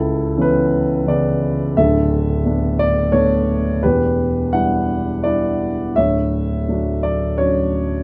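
Close, detailed microphones and a light reverb place a single grand piano up front in this short classical fragment, cut from a longer piece. The instrument sounds dark, mellow and boxy, with long sustain letting each chord ring. It is a lyrical solo piano passage in B minor and 3/4 at 86 BPM, played with a rubato feel that keeps the mood relaxed and gently warm. The harmony moves from Bm11/C# to Bm7/D at 1.8 seconds, then to Em7 at 3.8 seconds and Dmaj7 at 6.0 seconds. The piano spans D1 to F#5 across the whole 8 seconds.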